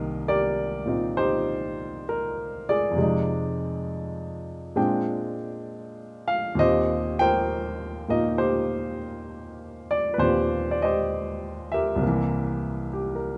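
Relaxed and swinging, this short solo jazz passage is cut from a longer piece and moves at an easy 66 BPM in 4/4, with a gentle swing on the eighth notes. A baby grand piano carries everything alone from 0.0 to 13.4 seconds, its tone warm and natural with a short sustain, sitting up front in the mix. The playing spans from the low C2 up to G5, giving the phrase both a grounded bass and a clear upper register. In Eb major, the harmony moves from Cm7 through Fm7 and Bb13 to settle on Eb6, then turns to C7 at 12.0 seconds as if leading onward. A moderate club reverb lends the piano a modest sense of room, keeping the sound intimate and close.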